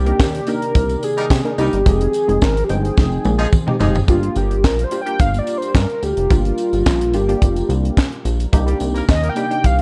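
Early-eighties boogie funk at 108 BPM with a danceable, late-night mood, this short excerpt sets a velvety, chorused synth lead over a glossy pulse-width synth bass, a punchy detuned polysynth comp, a shimmering, very quiet pad on Cm9, Fm7 and Gm7 chords, a dry, tight drum kit with a high-tuned snare and handclaps up front, a jingly tambourine in the background, and a pop-style horn section with tape echo playing a second line from 1.2 to 4.0 seconds and again from 8.7 seconds, all in a dark production with small room ambience, as a drum fill leads into a soft lead solo at 4.1 seconds.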